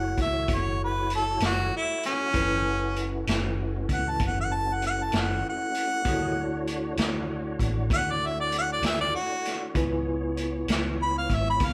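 A slow 12/8 pulse anchors this soulful, brooding blues excerpt, with a vintage acoustic kit entering at 0.2 s to lay down hi-hat, a punchy kick and a medium-tuned snare with a rolled-off top. A warm harmonica carries the melody as an up-front solo throughout, its jazz-style phrasing marked by scooped notes, light vibrato and a smooth edge. Beneath it, a barky tine electric piano plays accompaniment through a combo amp, lightly overdriven and pulsing with fast tremolo, while a clean tonewheel organ holds sustained chords through a slow rotary speaker and chorus vibrato. A dark, round hollow-body short-scale electric bass, played with the fingers, fills out the low end. The band sounds like it is playing live in one room, bathed in wet studio reverb, as the harmony moves from F#m7 to Dmaj7 and lands on a tense C#7#9 at 9.8 s.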